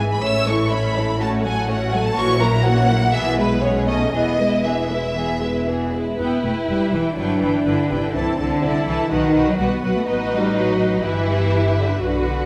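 At a quick 123 BPM in a straight 4/4, this graceful, cheerful string-orchestra passage in the classical-period style is cut from a longer movement. It opens in E major and turns to E minor at 6.2 s, a darker shift beneath an otherwise sunny character. The first violins carry the melody, high and close, with expressive, lush bowing and vibrato. A focused second violin line runs just below them, while the violas supply smooth, even accompaniment. The cellos and double basses share the bass: the cellos sit close and smooth, and the basses add a focused studio-style foundation. The whole ensemble plays throughout the 12.5 seconds, bathed in the generous reverb of a scoring stage.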